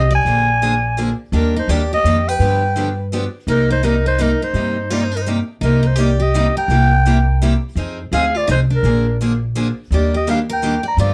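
A growling clarinet leads this swinging, virtuosic excerpt of acoustic string swing in the jazz manouche style, its raspy, gritty tone and mellow vibrato sitting up front. The piece moves at 168 BPM in 3/4 with a swung eighth-note feel in C minor, and the same section is heard twice. A picked steel-string dreadnought guitar carries a bright, full-bodied second line beneath the melody, while a boxy parlour guitar joins at 0.3 seconds with accompaniment, finger squeaks audible on its strings. Pizzicato upright bass on gut strings gives a woody, thumpy foundation, also placed up front. The harmony moves through Bb7, Ebmaj7, G7 and Cm7, then C7, Fm7, Bb7 and Ebmaj7, captured with close, detailed microphones and light reverb.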